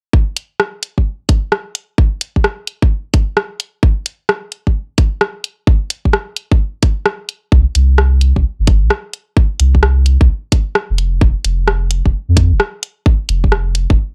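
A swung two-step garage rhythm in 4/4 opens this moody, late-night UK garage fragment, its sixteenths pushed into a lazy shuffle. A tight, layered electronic kick starts at 0.1 seconds, and the garage drum kit follows almost at once with hi-hat and rim click, both drum parts sitting up front with a tape-warm, produced character. At 7.5 seconds a soft dub sub bass arrives, deep and round, blending triangle and square wave tones with a fast attack and sustained notes that reach from Eb1 to F2. The dry, gritty sound carries cassette tape character and little reverb, keeping every element close. Cut from a longer piece, it stops at 14.0 seconds.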